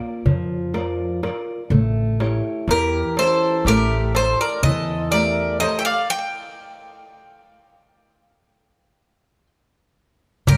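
The Greek bouzouki stands out most, entering at 2.7 s up front with a bright, metallic, picked melody on double strings, some of them octave-doubled, and carried by a slapback echo. This is a wistful, melancholic stretch of Greek folk in the bouzouki-band style, cut from a longer piece and moving at 123 BPM in a straight 9/8 counted in eighths. A fingerpicked flamenco guitar opens the recording with warm, up-front accompaniment, joined almost at once by a pizzicato, steel-strung upright bass and a crisp, small, high-pitched metal-shell darbuka heard in a live room. A mandolin arrives alongside the bouzouki as a quieter second line, its picked double strings sounding woody. The harmony moves from Bb to A7, then gives way to a stop from 6.1 s where the chords fall away, all under a light reverb.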